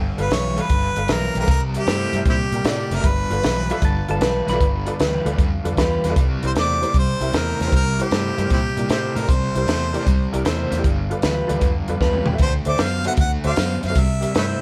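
A swung 154 BPM shuffle in 4/4 drives this soulful, rollicking electric blues in G mixolydian, where a clear, close-miked harmonica carries the melody with light vibrato, tongue slaps and scooped notes over an overdriven semi-hollow guitar riff with tremolo, a dark, foam-muted fingered electric bass, tight mellow saxophone stabs, a detuned, jangly honky-tonk upright piano that adds fills, and a compact cocktail drum kit with a punchy kick and high-tuned snare, while a twangy lap steel slide line appears briefly from 3.7 to 5.2 seconds, the band heard playing live together in one room with moderate reverb.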